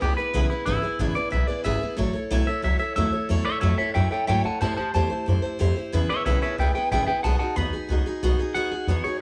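A twangy, slightly broken-up electric guitar carries the melody through a phaser, sitting up front in this retro, rollicking rockabilly fragment at 183 BPM in E major. A bright, full-bodied picked acoustic guitar fills out the accompaniment while a woody, thumpy pizzicato upright bass anchors the low end, all three playing from the start as the harmony moves through E6, A6, Am7 and B6. The band sounds live in one room with light reverb, and the cut runs about 9.2 seconds.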